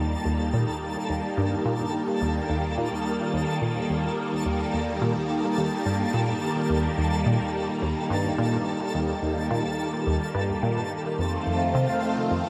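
A huge, wet reverb with a 7.5-second tail bathes this short cut from a longer piece of ambient, sequencer-driven space music in straight 4/4, giving it a cosmic, luminous feel. Up front, a phased string machine holds swirling, vintage sawtooth chords with a soft attack and long release, bright in tone and treated with ensemble chorus and phaser. Beneath it, a tight sequenced synth plays a low, driving riff, its mellow, evolving sawtooth tone shaped by a filter pluck with a fast attack and treated with chorus and tape echo. High above, a twinkling granular texture built from FM adds sparkling octave-up shimmer, arriving with a slow attack and carrying its own reverb. The harmony rests on Eb before shifting to F7 at 11.2 seconds.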